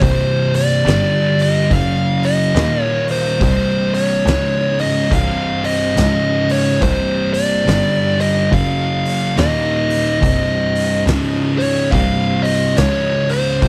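Heard in a small room, this brooding, hypnotic stoner and doom metal excerpt pairs two dark, picked fuzz guitars grinding out a swung riff, one tucked into the background, with a bowed, focused double bass with vibrato and light overdrive; an oversized, low-tuned acoustic drum kit with punchy kick, fat snare and hi-hat, gritty and saturated in a bright, pumping stone room; a very quiet, piping tonewheel organ holding sustained chords through a slow rotary speaker; and an up-front, warm fuzz lead guitar singing the melody through tape echo.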